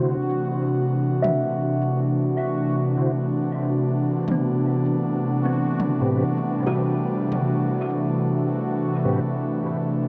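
Ambient dub with a hazy, meditative mood, this excerpt rests on an airy, breathy pad holding sustained chords up front, moving from D7 to Am7, while a bubbling, resonant stepped-filter texture and background tonewheel organ stabs with key click, slow rotary speaker and dub echo sit behind it. At 1.2 seconds a woody, hollow-sounding kalimba enters with plucked arpeggios under a filter sweep and dub echo, alongside distant electronic toms that also carry echo. A huge ambient reverb and a dark production give the piece its hazy depth.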